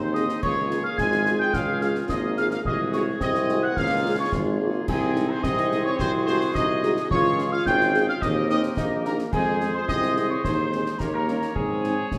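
A straight 2/4 pulse at 108 BPM drives this rousing, proud military-style march for wind band in Ab major, with concert snare drum, dark clash cymbals and concert bass drum marking time from 0.2 seconds and an up-front, vintage-sounding tuba anchoring the bass. Punchy trumpets with light vibrato carry the melody, while a hollow wooden piccolo and a clear, distant woodwind section trace second lines, smooth-topped trombones hold sustained chords in the background, and a very quiet, mellow French horn section fills in the accompaniment. The harmony moves through Db, Ab7/C, Eb and Fm before an Eb7 resolves to Ab at 11.6 seconds, all bathed in a wet scoring-stage reverb in this passage cut from a longer piece.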